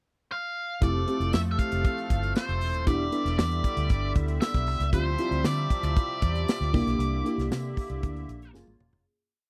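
A dry, close studio sound with a small room around it frames this polished 1980s jazz-funk pop piece, nocturnal and urban in mood, moving at 116 BPM in a straight 4/4. A nasal, overdriven lead guitar with a parked wah opens at 0.3 s during the pickup bar, picking a motif-based melody in sentence-like phrases. At 0.8 s the band arrives: a tight, up-front acoustic funk kit with a crisp sixteenth-note groove, a medium-tuned snare and tight kick; a dark, round, foam-muted fingered bass playing an agile syncopated line with chromatic approach notes; and a lush, dreamy FM electric piano with a soft pad layer, pushing rootless chords through a thick chorus. A reedy musette accordion holds shimmering, airy sustained chords beneath, and from 1.3 s a jingly tambourine sits in the background on the backbeat. The harmony steps from Fmaj7 through Em7, Dm11 and C9 before landing on F#maj7 as a drum fill closes the fade-out at 9.1 s.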